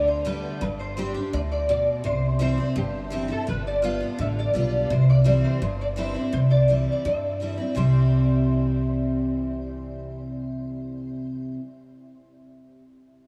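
Soaked in a huge, dreamy reverb, this nostalgic, heartfelt honky-tonk and classic country passage in C major at 168 BPM sets a metallic, nasal lap resonator guitar, played slide with fingerpicks and carrying ensemble chorus and a diffuse ambient delay, atop a bright, full-bodied picked steel-string acoustic guitar with analog chorus and audible finger squeak, while a woody, thumpy pizzicato upright bass sits dark and up front beneath them for roughly 11.5 seconds.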